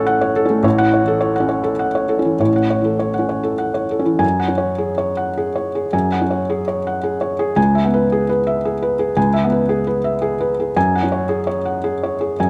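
A felt-muted upright piano plays alone in this wistful, reflective neoclassical minimalist fragment cut from a longer piece, its intimate, mellow tone, short sustain and audible action noise sitting up front under close, detailed microphones in a moderate recital-hall reverb, moving rubato in 3/4 at 96-116 BPM in F# minor (tuned to A4 = 438 Hz) from F#m/A and A6 into a second passage at 4.2 s that drifts through F#sus2 and C#m7 before returning to F#sus2 at 10.8 s.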